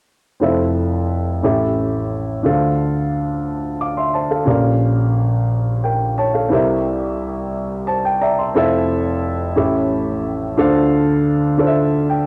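Soulful and hopeful, this short gospel passage, taken from a longer piece, moves at an unhurried pace in a gently rocking 6/8 with a straight feel. A solo grand piano carries everything, sitting up front with a natural, warm tone and reaching from deep bass notes up into its high register. The harmony travels from Fmaj7 through A7 and Dm7 to a tender Bbm6 and on to C7, then begins the same cycle again once the second section arrives at 8.6 seconds. Just before that turn, a brief piano fill starting at 7.5 seconds bridges the two sections. The piano passes through cassette tape and sits in a studio reverb, giving the home recording an intimate, slightly worn character.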